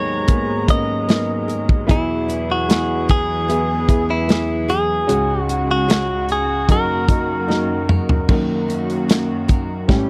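A dry, close 1970s-style studio sound frames this heartfelt pop ballad at 75 BPM in 4/4, a short fragment of a longer piece moving through G#madd9, E, C#sus4 and F#6. A clean, compressed, direct-recorded electric guitar carries the melody up front until 7.9 s, over a woody, slightly detuned vintage upright piano, bowed strings with light vibrato and a reedy gut-string tone, and a very quiet fingerpicked nylon-string guitar playing arpeggios. The up-front acoustic drum kit, with bright cymbals and a tight kick, plays a fill from 7.5 s, and at 8.3 s the piano takes a solo.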